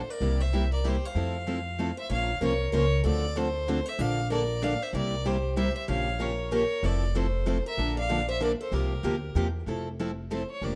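A rough home demo with light small-room reverb captures a lively, playful slice of jazz manouche in swung 3/4, where an earthy, distant bowed violin with light vibrato carries the melody over a bright, boxy archtop guitar's second line, two picked steel-string acoustic guitars providing accompaniment (one with audible finger squeak, the other set in the background), and a woody, thumpy pizzicato upright bass on gut strings sitting up front, until the archtop stops at 9.4 seconds and the violin takes a brief solo from 9.7 seconds.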